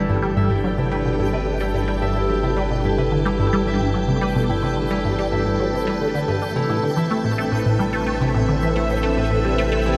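A straight 4/4 pulse at 109 BPM drives this mysterious, expansive stretch of sequencer-driven ambient space music, where a squelchy, resonant blip pluck sits up front with a bright riff treated with phaser, analog chorus and tape echo, over a round, deep analog bass. A lush vintage string machine holds mellow sustained chords, while a ringing, fingerpicked Celtic harp spins arpeggios through tape echo and a sparkling granular texture twinkles in the background. The harmony moves from Gsus2 to Amadd9 at 6.7 seconds, and a cathedral reverb places the whole passage in a vast, echoing space.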